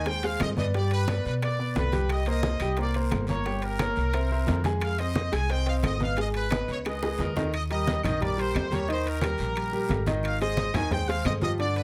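Sunny and festive, this salsa excerpt moves at 177 BPM in Eb major. A brilliant, punchy trumpet section carries the melody with light vibrato over a clear, intimate concert grand piano, whose action noise is audible, and a thumpy, up-front upright bass played pizzicato on gut strings. In the background sit low-tuned congas struck with hard hands, ringing metal-shell timbales, a raspy guiro and very quiet dry claves, while tight, high-tuned bongos play until 7.4 s, just as a drum fill from 7.0 s leads into the repeat of the opening section, all in light reverb.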